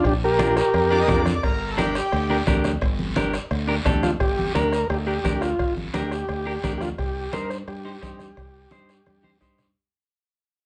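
A straight, danceable cumbia groove opens this passionate excerpt from a longer piece, driven by a close, soft-beatered bombo, low-tuned congas ringing under hard hands in the background, and a raspy, band-limited guiro. A bright, direct fingered electric bass sits up front, holding the low end from start to finish. A vintage combo organ carries the melody with a reedy tone and heavy vibrato, sounding briefly at the opening before returning at 4.0 seconds. A full, rich accordion adds a short second line early on, while a dark, picked clean electric guitar supplies accompaniment over changes moving from Bb to Gm and later Cm. The mix has a wet, roomy ambience heard from further back, with a dull top end, and the whole passage fades out from 4.2 seconds, closing on a drum fill at 9.1 seconds.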